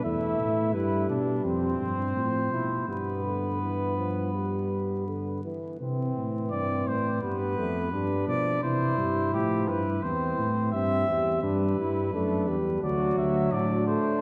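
In a straight 4/4 at 85 BPM, this serious, contemplative brass canzona in C major moves through imitative lines, shifting into a new section at 5.8 s, with chords such as Em, F, G, C/E and D. The soft-attacked, distant trumpet carries the melody up front, the flugelhorn adds a smooth-topped second line with light vibrato, and the vintage-toned trombone accompanies, while a punchy, close-miked tuba anchors the bass until 14.0 s. A long church reverb, a dark production and vinyl crackle give this fragment of a longer piece a hushed, aged atmosphere.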